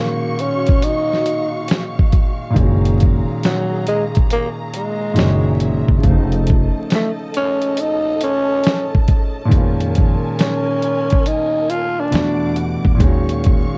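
Nostalgic and dreamy, this lo-fi hip hop excerpt sets a growling, breathy tenor saxophone melody up front over a mellow felt-muted upright piano and lush bowed strings bathed in plate reverb. A gritty, compressed sampler-style drum kit with a thumpy kick and fat snare comes in at 0.4 s, and a woody pizzicato upright bass joins at 2.6 s, while the saxophone, with scooped notes and vibrato, drops out at 12.6 s. The dark, warm production is wrapped in vinyl crackle and light reverb, with swung sixteenths and ninth chords giving it a relaxed sway.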